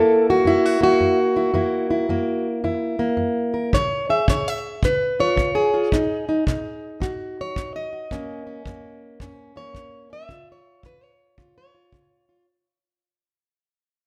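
A fingerpicked, plugged-in jumbo steel-string acoustic guitar opens this laid-back, gritty acoustic country blues in F# mixolydian at 110 BPM, its full-bodied melody sitting up front with a slapback echo and a swung feel over F#7, C#7, B, F# and C#. At 3.7 seconds a tight, small-room kick drum played with brushes joins, also up front, until 12.1 seconds. A lush hall reverb and rough home-demo character color the fragment, which is tuned slightly sharp and fades out throughout its 12.5 seconds.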